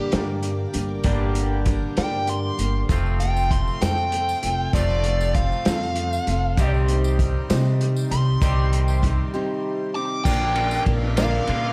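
Reflective and dusty, this slow 6/8 folk rock and heartland rock excerpt at 65 BPM moves from Gm through F and Cm to Bb, with a dark, overdriven lead guitar soloing up front through slapback echo until a break at 9.3 seconds, over picked steel-string acoustic guitar with finger squeak, a twangy, scooped electric riff in lush chorus, a brilliant grand piano in the background, a floating, very quiet string section, a woody, growly pizzicato upright bass, a muffled lo-fi vintage drum kit, and a jingly tambourine entering at 2.9 seconds, all set in dark studio reverb.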